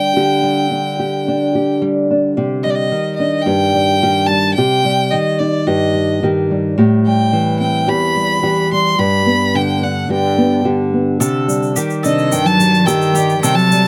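A rich, focused fiddle with light vibrato and a smooth top carries the melody up front in this peaceful acoustic folk piece at 108 BPM, over dark, thumb-plucked nylon-string guitar, joined at 10.1 seconds by an expressive, warm bowed cello line with soft attack and portamento, and at 11.2 seconds by picked, double-string bowl-back mandolin arpeggios and a grainy, bright egg shaker, heard through close, detailed microphones and light reverb as the chords move from Dsus4 through Cmadd9, Am7 and G.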